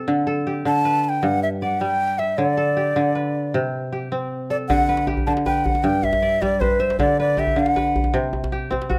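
An airy bamboo bansuri sings a close, vibrato-laden melody from 0.7 to 8.2 seconds, its tongued notes sitting up front over the ringing, crisp fingerpicked arpeggios of an acoustic kora that runs from the very start. This hypnotic, warm piece of West African string music moves in a straight 12/8, and a tight, cracking djembe played with hard hands joins at 4.7 seconds as the opening passage repeats. Close, detailed microphones and light reverb keep every pluck and breath vivid in this fragment cut from a longer performance.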